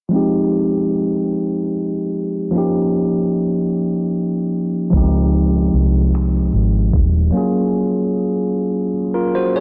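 A slow, straight 6/8 R&B groove at 50 BPM in F minor sets a sultry, late-night mood in this excerpt, where a bell-like, barky tine electric piano with phaser carries the chords from Fm9 through Eb7 and Dbmaj9#11 to Gbmaj9 while a round, foam-muted fingered bass and an electronic kit of finger snaps, metallic hats and a knocking kick with a soft-clipped snare join at 4.9 seconds before dropping away into a break at 7.3 seconds, all heard through a blown-out, overdriven, low-pass-filtered recording with light reverb and a filter sweep running throughout.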